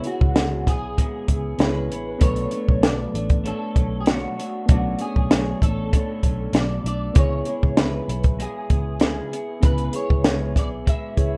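A dark, up-front compact cocktail drum kit with a high-tuned snare and punchy kick opens this wistful, mellow indie bedroom-pop fragment together with two slightly broken-up picked electric guitars through a small old amp, one carrying the melody with ensemble chorus and the other accompanying with lush chorus and vibrato, both bathed in plate reverb beside a reedy, clean electric piano, while a foam-muted, round fingered bass joins at 0.2 s beneath C#m7 and Bm9 chords in a rough home-demo mix with light reverb.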